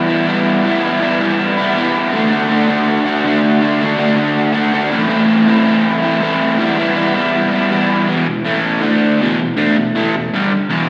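Rock with a menacing, swaggering mood, this short excerpt cut from a longer piece features a lone crunchy overdriven electric guitar playing on its own for the full 10.9 seconds. The guitar is picked and double-tracked, sitting up front with a warm, overdriven edge and a slapback echo trailing each phrase. It moves through a brooding progression of E minor, D and A minor before settling back on E minor, then shifts at 8.1 seconds into a passage of power chords on E, A and D that lands again on E minor. The straight feel in common time gives the riffing a driving, strutting stride. Captured live at a gig through the venue's sound system, the guitar carries a light reverb and the natural bloom of a recital hall.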